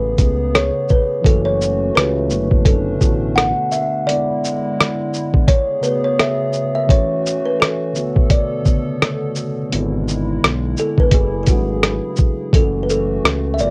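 A hazy home recording on cassette in a booth with moderate ambience carries this nostalgic lo-fi hip hop excerpt at 85 BPM in F# minor. An up-front, woody, ringing kalimba plays the melody over a hollow, flute-like pad and a mellow tine electric piano accompaniment. A muffled, pitched-down sampler-style drum kit of thumpy kick, hi-hat, rim click and shaker swings up front, while a smooth sawtooth synth bass drops out at 3.5 s and returns at 9.7 s.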